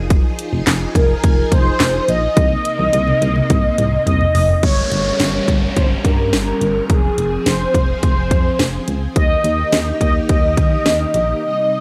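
An overdriven house drum kit drives this cool, melancholic synth-pop excerpt at 106 BPM in 4/4, its layered electronic sound up front with a punchy kick, a cracking snare, handclaps, hi-hat and toms, plus a drum fill from 2.4 to 4.6 seconds. Beneath it, a solid FM bass gives round, digital notes with a fast attack that decay. A vintage string machine holds sustained violin chords with a soft attack, its bright, shimmering tone thickened by ensemble chorus. From 1.0 seconds a mellow synth brass carries the melody up front, brassy and detuned with vibrato, chorus and a filter sweep, its tone dark with a sawtooth edge. A downlifter and riser arrive at 4.6 seconds as the harmony moves from Fm7 and Cm7 through Gdim and Fm to Eb. The dry, gritty hardware recording has little reverb.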